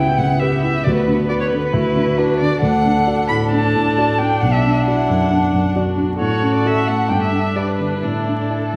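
Stormy and dramatic, this quick classical-period excerpt for piano quintet in D major at 134 BPM sets a warm, vibrato-rich first violin singing the melody with expressive portamento over a focused second violin line, an intimate, airy-bowed viola and a dark, mellow grand piano up front, all bathed in the wet reverb of a church or concert hall with vinyl crackle as the harmony moves from C#m7b5 through Bm and G to close on Asus4 at 8.0 seconds.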